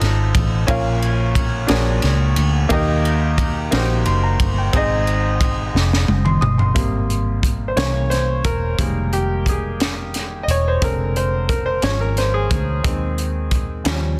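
Slow gospel in a straight 6/8, hopeful and jubilant, cut from a longer piece, with a clear, worn grand piano up front over a dark, round, foam-muted fingered electric bass and a crisp fusion drum kit with bright cymbals, a high-tuned snare and a tight kick in a small, pumping room. A drum fill from 5.7 to 6.8 seconds leads into a grand piano solo that carries the rest of the passage, moving from F7 and Bbm through Abmaj7 and Fm11 to settle on Ab/Eb. Light reverb and studio ambience frame a dense, heavily limited modern master.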